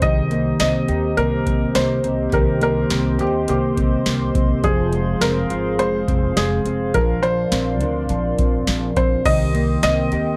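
A felt-muted upright piano, a hollow pad, a mellow electric guitar, upright bass and a booming analog drum machine all begin together in this hazy, ethereal dream pop piece, cut from a longer recording in C minor at 104 BPM in a straight 4/4. The up-front piano carries the melody with a soft, intimate tone, short sustain and audible action noise, treated with tape echo and plate reverb. Alongside it, the flute-like pad holds sustained chords with a slow attack and detuned shimmer, treated with chorus and plate reverb, while the clean, fingered guitar plays dark arpeggios through analog chorus and tape echo. The pizzicato upright bass sounds woody on its steel strings, and the electronic drums, re-recorded in a small room and placed up front, pair a deep kick and crisp snare with metallic hats and crash cymbal. The harmony moves from Cm7 to Fm at 4.6 seconds and Bbadd9 at 6.9 seconds before returning to Cm7 at 9.3 seconds, all within a dark, warm production and a modest booth ambience.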